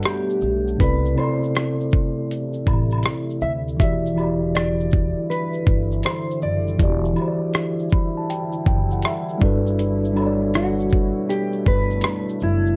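Lo-fi hip hop at 80 BPM in E minor with a nostalgic, melancholic swing, where a dark, fingered electric guitar melody drenched in lush chorus floats over clean tine electric piano chords, which add a fill from 7.5 to 9.8 seconds, while a deep, evolving pad hums in the background, gritty sampler-style drums with a thumpy kick sit up front, a distant tube shaker and woodblock add texture, and a woody pizzicato upright bass enters at 0.4 seconds, all wrapped in worn, warbling cassette tape.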